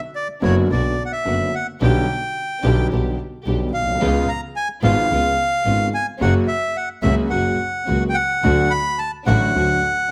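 Tango in B minor at 108 BPM, dramatic and sultry, played with a rubato feel in this short cut from a longer piece, moving through Bm, G/B, C#7, F# and D. A reedy, bright bandoneon carries the melody up front from 0.2 seconds, over an intimate concert grand piano accompaniment with deep bass, long sustain and audible action noise. A single bowed double bass, earthy and biting with light vibrato, holds the low end, while a soft-edged string section plays sul tasto stabs in the background, all set in a moderate large studio reverb.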